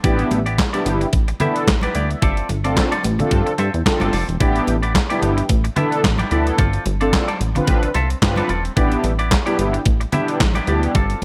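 This early-eighties boogie funk excerpt is danceable and slick, moving at 110 BPM in 4/4 with a 56% swing on the sixteenths, in A minor. Up front sits a thumpy, sampler-style 12-bit drum machine with handclaps, hi-hat, kick and a medium-tuned snare, its tape-tinged sound carrying gated reverb and the character of a large room. Beside it, a punchy, plucky analog bass built from sawtooth, pulse and triangle tones with ring modulation also sits up front in the mix, evolving and decaying with a quick filter pluck. Mellow, brassy synth brass with detuned saw and square waves, a sub octave, a filter sweep, vibrato and chorus holds sustained, round accompaniment until 11.0 seconds, while a bright, twangy, compressed clean electric guitar plays a picked riff through lush chorus. Very quiet acoustic congas with thick skins and hard hands add a small-room texture, as the harmony alternates every 2.2 seconds between A9sus4 and G9sus4 over a mix with little reverb overall.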